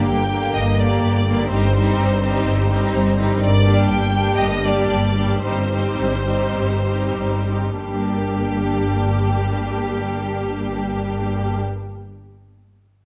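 A clear, focused violin section carries the melody in this dramatic, restless excerpt from a fast romantic movement in G minor, moving between 92 and 128 BPM in 4/4 with a rubato feel and slowing between 2.5 and 7.8 seconds. A distant, smooth second violin line and expressive violas fill the middle while lush cellos, set in the background, and double basses hold a low G, and a very quiet harp adds ringing, fingerpicked arpeggios that carry on to 11.9 seconds. The harmony rocks between G minor and C minor over G, set in a moderate recital hall reverb and captured with close, detailed microphones.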